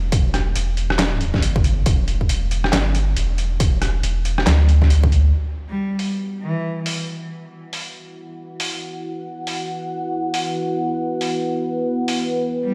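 Deep dubstep with a dark, heavy mood and a swung, half-time feel, cut from a longer piece. For the first 5.3 seconds a soft, round dub sub bass sits up front over E minor, joined by a punchy, layered electronic kick. Underneath, a gritty, pitched-down trip hop sampler-style kit of handclaps, hi-hat, rim click and medium-tuned snare, compressed and tape-warm, carries on until 12.2 seconds. At 5.3 seconds the harmony moves to Emadd9 as a moody analog pad enters with slow-attack sawtooth tones, detuned and thickened by a sub octave, coloured with chorus and phaser and shaped by a filter sweep. A single bowed cello, clear and focused with vibrato and a slightly boxy tone, adds a brief phrase through dub echo. The music sounds as if played on a big sound system in a bare stone room, with light reverb.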